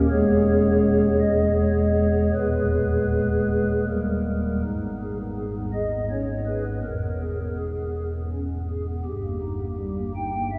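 Bathed in a cavernous cathedral reverb with a long 5.5-second decay, this dark, solemn fragment of a longer classical chorale in 3/4 features a solo pipe organ on a stopped flute stop, sitting up front with a soft, hollow, mellow tone, a tremulant and romantic voicing as its harmonies move from E through G# minor to D# across 10.6 seconds.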